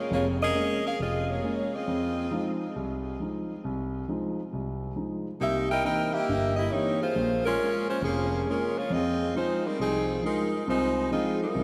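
A clear, close-miked saxophone section with vibrato and a touch of delay carries the melody up front in this swinging, dramatic F minor jazz excerpt at 136 BPM, falling silent between 2.6 and 5.4 seconds while a dark, mellow concert grand with deep bass accompanies through Bbm7, Fm7 and C7#9, all bathed in a lush hall reverb that gives the mix a dreamy, soaked feel.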